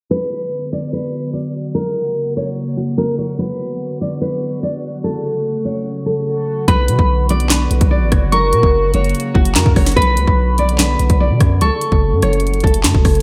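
Drill hip hop with a cold, ominous, half-time feel, cut from a longer piece, opens on a fingerpicked, full-bodied nylon-string guitar melody with lush chorus and delay over an airy, detuned sawtooth pad during a filter sweep, before drill drums with a hard-clipped kick, a sharp snare and bright hats and a deep, sine-toned 808 bass arrive at 6.7 seconds alongside a soft, warbling FM bell line, all set in a dreamy, reverb-soaked mix.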